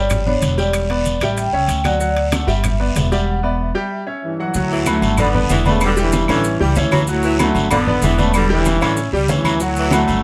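Joyful and festive, this is a brisk salsa clip in D major at 190 BPM, cut from a longer piece, moving through a bright cycle of G, Em7, A7 and D chords. A mellow, airy vibraphone played with soft mallets carries the opening melody with a medium motor vibrato until 4.4 seconds, over a bright, polished upright piano and a dark, thumpy gut-string upright bass plucked up front. Low-tuned congas with a thick skin, ringing metal-shelled timbales and agogo bells, woody claves and grainy maracas sit in the background, while a raspy guiro is heard from a distance in a large room. After a break that runs from 3.3 to 4.5 seconds over an Em69/G chord, a brilliant, tight trombone section takes over the melody from 4.2 seconds, with a clear saxophone section adding a second line. A moderate studio reverb gives the ensemble a lively, polished finish.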